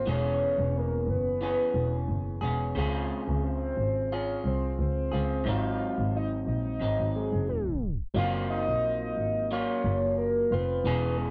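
A gently swung sixteenth-note feel in 4/4 gives this short cut from a longer indie and bedroom pop piece a hazy, sunny sway. A soft, round synth lead layered with a sub octave carries the melody, its sound treated with phaser, lush chorus and a slapback echo. Beneath it, an electric guitar through a small old amp plays slightly broken-up, lo-fi accompaniment, colored by lush chorus and a warbly pitch drift. A dark bowed double bass sits close and up front, its airy sul tasto tone carrying a light vibrato. The harmony moves through E6, Dbmaj7 and Ab7 before a tape stop from 7.5 to 8.2 seconds gives way to a new section on Gbmaj9#11, all wrapped in light reverb.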